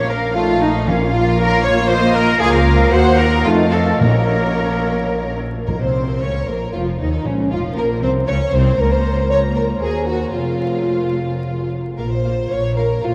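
A quick, restless classical-period orchestral movement in triple time, urgent and pushed about with rubato, in which lush bowed violins carry the melody while a clear second violin section, a mellow clarinet and an airy, hollow flute section weave second lines. Rich violas and a warm bassoon fill in the accompaniment, focused cellos and an up-front double bass section anchor the low end, a dark, distant French horn section holds sustained chords, and close, dry timpani strike beneath. The clarinet, flutes and bassoon fall away at 5.4 s, and the timpani finish at 8.0 s, leaving strings and horns to carry on through a vast, echoing reverb tinged with vinyl crackle.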